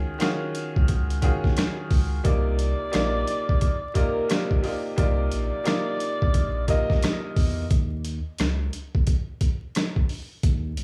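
Boom-bap hip-hop with a dark, moody, swung feel, cut from a longer piece and carried by a gritty, pitched-down sampler drum kit with a thumpy kick, sitting up front in a large room, over a deep, saturated sub bass that runs the full 10.8 seconds. A bright, worn concert grand piano with audible action noise plays filtered, plate-reverbed accompaniment until 7.7 seconds over a move from Ebm11 to Cm11, and the harmony shifts to Dbsus2 as the piano drops out. From 2.2 seconds a breathy tenor saxophone takes a mellow, jazz-style solo with vibrato, subtone and scooped notes, treated with tape echo, all beneath a haze of vinyl crackle and light studio reverb.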